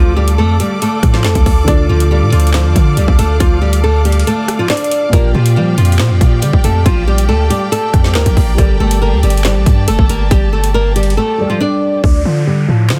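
A fingerpicked flamenco guitar opens this tense, menacing drill excerpt, up front with audible finger squeak and a muffled, filtered edge, over a deep, sine-toned 808-style bass with a fast attack and long decay. Beneath them sit a dark grand piano, mellow and intimate in the background with its action noise audible, and a lush symphonic string section holding bowed chords with rich vibrato. The drill kit comes in at 0.3 seconds in a half-time feel, with a hard-clipped kick, a woody snare, metallic hi-hats, handclaps and rim clicks pushed to the front. The harmony moves from Dm through Bb6 and Gmadd9 before returning to Dm, with a short break midway and a silent gap just before the close. From 12.0 seconds the hi-hats drop out and an electronic downlifter appears, all set in a small room ambience with a dense, heavily limited modern master.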